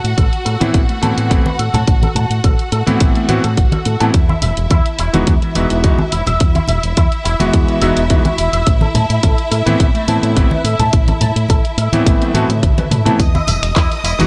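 A straight 4/4 nu-disco groove drives this sunny, groovy excerpt from a longer piece, anchored by a punchy, up-front electronic kick that enters at 0.2 seconds alongside bright, close and dry congas sitting in the background. A layered pop drum kit with warm hats adds finger snaps, handclaps, tambourine and toms, and a drum fill arrives at 12.1 seconds. Underneath, a fingered electric bass runs through an envelope filter with a direct, amped tone, while a clean, twangy picked electric guitar, also envelope-filtered and compressed, plays a riff colored by analog chorus, a low-pass filter and digital delay, with a filter sweep running across the clip. A clear electric grand piano with clangy lows and long sustain carries the accompaniment up front from 0.6 seconds, roughened by vintage 12-bit sampler grit and touched with digital delay. A lush symphonic violin section holds sustained, bowed chords with vibrato and a smooth top, pumping under sidechain compression as the harmony moves from Amadd9 to Emaj9 and back, all set in light reverb.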